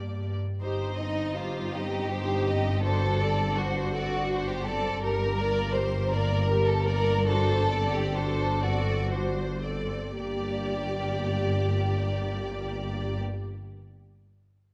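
In a rubato 6/8, this elegiac, solemn slow movement for string orchestra is cut from a longer piece, and its pace eases between 3.9 and 10.2 seconds before a new section begins. One violin section sings the melody with a soft attack and expressive vibrato, and a second violin line sits up front, smooth and even. Violas add accompaniment with portamento, cellos enter at 0.6 seconds with a focused, lush tone, and the double basses lay a clear bowed foundation, all set in a wet scoring-stage reverb.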